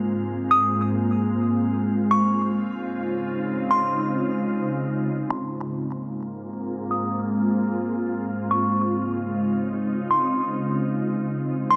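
Hip hop in free time and Ab major, this blissful, floating excerpt sets a glassy, ethereal FM pad holding slow-blooming chords between Ab6 and Dbmaj7 up front with ensemble chorus, joined at 0.5 s by a delicate, tinkling synth tine bell melody high in the register with chorus and digital delay, as a filter sweep from 5.3 s colours the dark production in a lush hall reverb.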